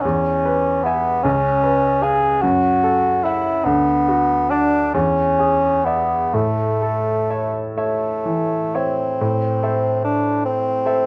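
A clear bassoon carries the lyrical melody in this short romantic classical duo, sung in a classical style and placed up front across the full 11.1 seconds. A bright, brilliant baby grand piano accompanies it, also up front and natural in tone, ranging from deep bass notes to sparkling upper notes. The music moves slowly in 6/8 at about 40 to 51 beats per minute, counted in dotted quarters, with a flexible rubato feel and tuning set to A4 = 438 Hz. The harmony in A major passes through E, C#7, F#m7, Bm/D and E7 before settling on A at 6.3 seconds, then turns to A minor at 9.2 seconds as the passage moves into a new section. Light reverb and a dark, warm production give the duo a lyrical, warm character, and the fragment is cut from a longer piece.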